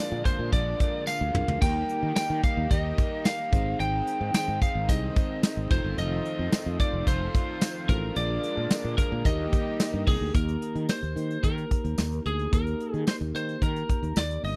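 1980s-style pop with a glossy, uplifting mood, moving in a straight 4/4 and cut from a longer piece. A bright, twangy lead guitar with a slightly broken-up, compressed edge carries the melody up front, while a mellow tine electric piano supplies clean accompaniment beneath it. Growly, punchy fretless bass sits up front too, and a soft brush kit with a punchy kick and medium-tuned snare drives the groove, marked by a short drum fill at 1.1 seconds. Further back, a cranked stack guitar adds overdriven, chorused accompaniment until 10.9 seconds, a lush, detuned unison pad with an airy noise layer holds sustained chords until 10.3 seconds, and a jingly, saturated tambourine shimmers in the background. The harmony moves through dominant-seventh chords resolving to the home chord, and the dry, close sound of a 1970s-style studio keeps every part present and intimate.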